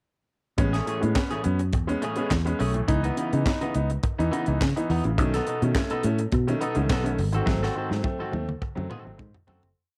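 A foam-muted, round fingered electric bass sits up front, driving a syncopated disco line with slides through this short, glamorous disco piece at 105 BPM in a straight 4/4. A tight funk drum kit with a high-tuned snare layered with handclaps, a tight kick and toms lays down a four-on-the-floor beat with sixteenth-note hi-hats, dry and close. A clear grand piano plays a percussive keyboard groove, while an electric guitar at the edge of break-up adds a choppy, twangy sixteenth-note disco part bathed in spring reverb. The harmony moves from Amaj7 through C#m9 and B7 to G#7b9 over a single verse. A drum fill arrives at 7.5 seconds as the whole piece fades out, ending at 9.8 seconds, all carrying the soft grain of a home cassette recording with light reverb.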